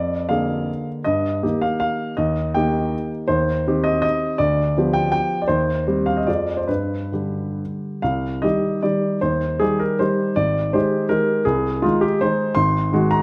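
A solo grand piano opens a short, nostalgic fragment of a romantic triple-time dance, its dotted rhythms shaped with supple rubato and its wistful mood carried as the harmony shifts to C minor from 3.3 s. The instrument sits up front with an intimate, natural tone, close microphones catching detail and audible action noise while a moderate recital-hall reverb adds space. At 8.1 s a new section begins, moving through A-flat colours before the fragment breaks off at 13.2 s.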